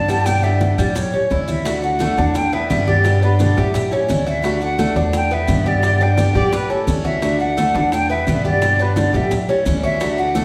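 A concert flute carries the melody from the first moment, airy and distant with vibrato and tongued, expressive phrasing, over a boxy parlour steel-string acoustic guitar and the metallic double strings of a Cuban tres playing arpeggios. This is a relaxed, danceable blend of Cuban son and guajira in D major, moving at 172 BPM in a straight 4/4. A woody, growly pizzicato upright bass anchors the low end, while ringing low-tuned congas played with hard hands, grainy close maracas and round, very quiet bongos fill in the percussion just after the start. The harmony cycles through G, A7, D and Em7. At 6.4 seconds a punchy, roomy trumpet slips in briefly with a vibrato second line before dropping out at 7.0 seconds. A wet recital hall reverb gives the whole excerpt the spacious sound of a church or concert hall.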